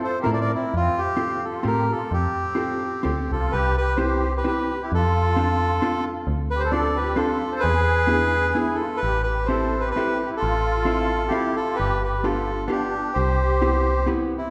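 A charming, nostalgic musette waltz cut from a longer piece, swung and rubato, opens with a reedy, airy bandoneon carrying the melody up front over a shimmering musette-tuned accordion second line and a clean, picked, compressed hollow-body electric jazz guitar accompaniment, joined at 0.3 s by a dark, metallic FM bass with a fast attack and a decaying tone, all within a wet concert-hall reverb.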